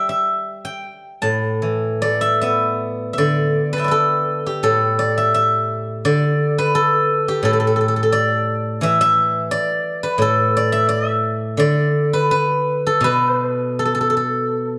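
A moderate recital-hall reverb surrounds a silvery, ringing steel-string zither placed up front, played alone with fingerpicks across a range from A2 to B5. This elegant, flowing Chinese traditional piece for solo plucked strings moves in a rubato 4/4 at roughly 73-89 BPM, in the A shang mode tuned to A4 = 441 Hz. Cut from a longer work, it opens with a short passage before moving into a new section at 3.2 seconds that runs to 14.5 seconds, with the zither ringing on until the close at 14.8 seconds.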